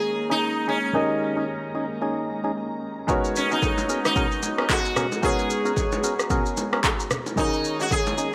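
A light, small-room reverb frames this short amapiano cut, hypnotic and soulful at 112 BPM in 4/4 with a swung sixteenth feel, in G# minor. An up-front sitar carries the melody, its plucked, buzzing tone shimmering with sympathetic strings and tape echo. Beneath it sit a warm grand piano accompaniment with long sustain and a dark, glassy FM pad holding ethereal chords with ensemble chorus and sidechain pumping. From 0.3 seconds a hollow, mellow organ stab adds percussive hits treated with chorus and tape echo. At 3.1 seconds an electronic afro-pop kit arrives up front, its deep, overdriven kick joined by handclaps, rim click and shaker, while bright, vintage congas and bongos enter in the background and the harmony moves from D#7sus4 to G#m11 before returning to D#7sus4 near the end.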